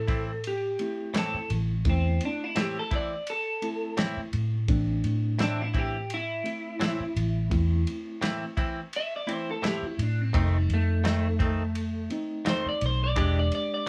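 A bright, slightly broken-up electric guitar through a small old amp carries the mournful melody with analog chorus in this brooding straight-eighth soul blues excerpt at 85 BPM in A minor, over a reedy electric piano with fast tremolo, a round foam-muted bass, scooped twangy clean guitar stabs and a dry, dark soul drum kit of kick, snare and ride, moving from Am to F7 at 10.3 seconds and E7#9 at 13.2 seconds in light reverb.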